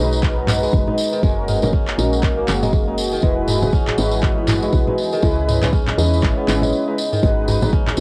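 A deep electronic kick sits up front in this warm, spiritual afro house passage at 120 BPM in G# minor, carrying a 16th-note swing over a small room ambience and cassette tape coloring from 0.2 to 7.8 seconds. Around it, a produced afro-pop kit adds handclaps and toms, a jingly, band-limited vintage tambourine plays throughout, and low-tuned, damped congas with a thick-skinned tone sit in the background. A bright, crisp kora plays ringing arpeggios through analog delay and sidechain pumping, while mellow synth brass fires round, detuned sawtooth stabs with chorus, vibrato, a filter sweep and 12-bit sampler grit. Underneath, a woody, soft, decaying FM bass with tube saturation moves alongside a deep, moody analog pad that holds full-bodied chords in the background with a sub octave and a slow attack. The harmony moves from G#m7 to Eadd9 and C#m7 before returning to G#m7. After a short break, a very quiet, medium-tuned djembe with metal rattles joins at 7.2 seconds, all under light reverb and the character of a home cassette recording.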